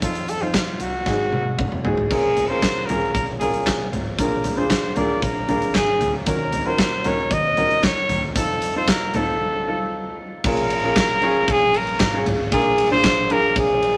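A straight 4/4 pulse at 115 BPM drives this dramatic piano-driven pop cut in Bb minor, where a clear, punchy, close-miked trumpet carries the up-front melody with light vibrato over clear, natural grand piano chords of short sustain, a dark, foam-muted picked electric bass sitting round in the background, and a huge arena drum kit with bright cymbals, a fat snare, punchy kick and handclaps, with a drum fill from 1.1 to 2.1 seconds and a break at 9.4 seconds, all in a small, wet room.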